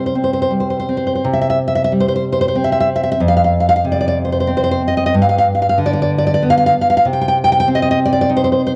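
Worn, warbling cassette tape with a drifting pitch colours this short fragment, set in a moderate recital-hall reverb. A full-bodied, fingerpicked nylon-string guitar sits up front and plays solo throughout a melancholic, passionate romantic piece in C minor, moving in a rubato 3/4 at about 93 BPM. Its deep classical voice spans F2 to G5 and moves through C5, F5 and G before settling on C minor at 7.1 seconds.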